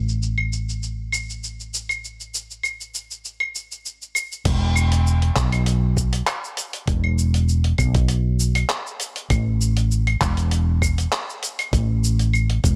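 A dry, close-sounding fragment of a longer sunset chillout piece, smooth and relaxed at 99 BPM in 4/4 with a light 16th-note swing and tuning set to A4 = 438 Hz. A woody, dark fretless electric bass sits up front, its round, hollow-body tone thickened by tube saturation in the low register. A dusty, gritty soul drum kit with cabasa, claves, handclaps, hi-hat and crash, muffled by low-pass filtering, joins at 0.1 seconds, and a thumpy electronic kick arrives at 4.5 seconds to anchor the second section.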